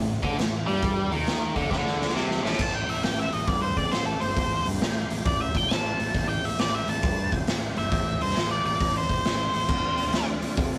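An octave-fuzz lead guitar, dark and up front, takes a solo from 2.6 seconds over a growly fuzz bass, punchy garage drums with a fill at 1.7 seconds, a thick organ with slow rotary swirl in the background, and a double-tracked overdriven rhythm guitar that plays the opening riff alongside the bass and drums, giving this gritty, brooding blues-rock and southern-rock excerpt a rough rehearsal-room feel.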